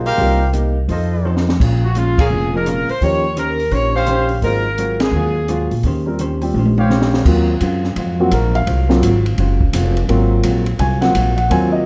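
Heard through a mellow production and a large studio's moderate reverb, this brassy big band swing excerpt moves at 170 BPM in 4/4 with a swing feel in Ab mixolydian. The plucked upright bass sits up front with a woody tone, while the open acoustic drum kit brings dark cymbals, a high-tuned snare, a boomy kick and two drum fills. A clean, compressed hollow-body electric guitar comps quietly beneath, and the clear trumpet section punches out tight stabs with a soft attack and vibrato. The bright saxophone section carries a smooth melody with light vibrato from 1.8 to 5.7 seconds, and the band hits two accents together. From 7.3 seconds the warm, natural grand piano takes a solo over an Ab13 chord until the cut ends.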